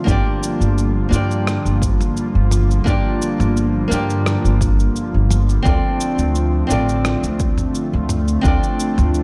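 A straight 4/4 groove at 86 BPM sets the pace for this smooth sunset chillout excerpt in G minor, moving from Gm7 to Dm7 at 5.7 seconds. A punchy, overdriven electronic kick and a gritty, compressed sampler-style kit of rim click, shaker and toms enter at 0.1 seconds, sitting in a small room ambience, with the kick dropping out at 8.6 seconds. An upright bass played pizzicato sits up front with a woody acoustic tone, carrying the low end. A small, fingerpicked nylon-string guitar adds accompaniment through a digital delay. An airy, breathy pad with a slow attack and long release holds soft, detuned chords under chorus. Light reverb and digital ambience give the whole a dark, warm production.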